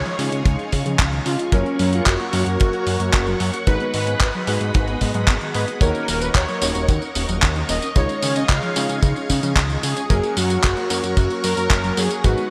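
A sunny, danceable slice of italo disco, cut from a longer piece, moves in a straight four-four over a chord cycle of C#add9, F#, G#m7 and D#m7. A bold, nasal analog synth brass carries the melody, its detuned sawtooth tone shaped by a filter sweep and vibrato, with chorus and digital delay around it. Underneath, a fat analog bass with a moving notch supplies the low end, while a tight, dry kick drum sits up front from 0.5 seconds alongside a gritty, tape-warm sampler-style kit of handclaps, hi-hat and tambourine bathed in gated reverb. Further back, a lush string machine holds slow-attack sustained chords through ensemble chorus, a vintage electric grand piano with a clangy bass adds stabs through digital delay, and a soft, round pluck spins dark arpeggios. A barely audible electronic downlifter opens the first 1.5 seconds, and the whole mix shines with bright 1980s-style digital production in a lush hall reverb.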